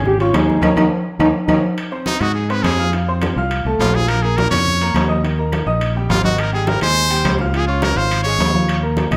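A brisk, straight four-beat salsa groove drives this sunny, festive fragment of a longer piece, carried by ringing congas played with soft hands, metal-shelled timbales heard from a distance in a large room, and very quiet, woody claves. Underneath, a round, punchy fingered electric bass sits up front, while a clear concert grand piano supplies the accompaniment with an intimate, slightly boxy tone, deep low end, long sustain and audible action noise. A dark duduk opens the melody in a folk style, with vibrato and scooped notes sounding distant and roomy, as the band hits a shared accent capped by a drum fill. At 1.8 seconds the music shifts into a new section, and from 2.1 seconds a brilliant, forceful trumpet takes a pop-style solo up front with vibrato, riding a chord progression that moves from Ab through F, Bbm, Eb and Abmaj7 to Db. A moderate large-studio reverb gives the ensemble a spacious finish.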